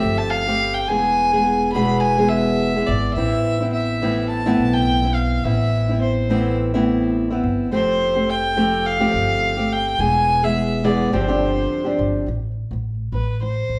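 A lightly swung sixteenth-note feel in 4/4 at 106 BPM carries this wistful, tender acoustic pop excerpt in A minor. A fingerpicked steel-string acoustic guitar sits up front with the accompaniment, moving through Fadd9, E and Amadd9 before reaching G7sus4 and settling on Am at 12.3 seconds. A single bowed violin carries the melody between B4 and B5, its tone nasal and earthy with a light vibrato. Beneath them, a pizzicato upright bass adds a woody, thumpy low end in the range of E1 to B1, sitting a little lower in the mix than the other two parts. The trio sounds as if playing live together in one large studio, wrapped in a wet reverb that gives the whole a spacious glow.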